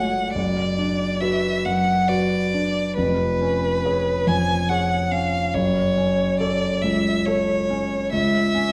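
A solo violin and a concert grand piano begin together in this lyrical, romantic classical duo, a short passage cut from a longer piece in F# minor. The tempo sits around 69 BPM in a flexible, rubato 3/4. The violin carries the melody between B4 and G#5 with a rich, smooth bowed tone and steady vibrato, sitting up front. The piano accompanies from a deep bass E#1 up to C#5, its sound intimate and polished with a short sustain and audible action noise. The harmony moves from Bm/F# to C#7/E# at 3.0 seconds and settles on F#m at 5.5 seconds, before a rootless A/C# near the close. A wet recital hall reverb, heard from further back in the room, surrounds the warm, lyrical duo through to 8.7 seconds.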